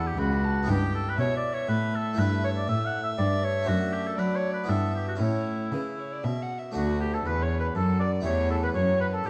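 From the first beat, oboe, violin, harpsichord and cello sound together in a radiant, dance-like baroque-style sonata movement in D major, moving in a straight 3/4 at 120 BPM. The oboe carries the melody with a soft attack and light vibrato, set up front yet with a distant, roomy quality. Alongside it the violin plays a second line in period style, its gut-string tone edged with a reedy colour. The harpsichord fills out the accompaniment with a full, plucked French-style sound on two sets of strings. The cello anchors the bass with a rich, nasal voice and is the most prominent part in the mix. The chords move from D through Em/G, A5/G and D/F# to A, and the opening phrase begins again at 6.7 s in a dark, warm production with moderate recital hall reverb of 1.5 s, in this short excerpt cut from a longer piece.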